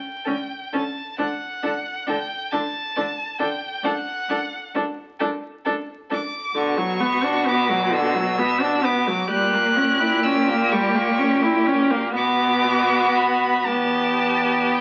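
Classical slow romantic movement for string quartet, cut from a longer piece, moving with rubato at 35-46 BPM in 6/8. It is solemn and yearning, in D major before turning to B minor at 6.6 s. A clear, focused first violin sings the high melody up front, while a rich second violin adds an expressive line with soft attacks and portamento, the viola supplies smooth, even accompaniment close to the listener, and a distant cello carries the bass with its own portamento; all four are bowed with vibrato, heard in the moderate reverb of a large studio through the crackle of a very old 78 rpm record.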